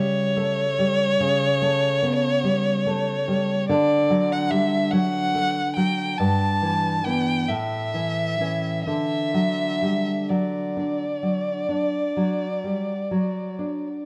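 A bowed violin and a nylon-string classical guitar begin together, the violin singing a lyrical, serene melody in its upper register with vibrato and portamento, while the guitar's dark, thumb-plucked accompaniment sits low beneath it. This romantic duo moves in a flowing 12/8 with a free, rubato feel, its harmony settling from an unresolved opening chord toward a restful close by 8.9 seconds. Both players sound up front, the violin's tone warm with a smooth top, all held in the moderate reverb of a recital hall in this excerpt from a longer piece.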